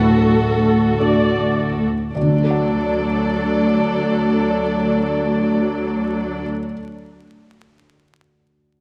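Moving and tender, this cinematic film-score fragment unfolds in a rubato 4/4, easing back over its opening 2.2 seconds as it opens on a D chord. Muted string sections play con sordino with vibrato: veiled violins carry a second line, lush, smooth-topped violas fill in the harmony, and up-front cellos hold a low D until all three fall away at 6.4 seconds. A dark, mellow baby grand with audible action noise and short sustain continues alone to 8.8 seconds, set in a spacious scoring-stage reverb beneath a vinyl crackle.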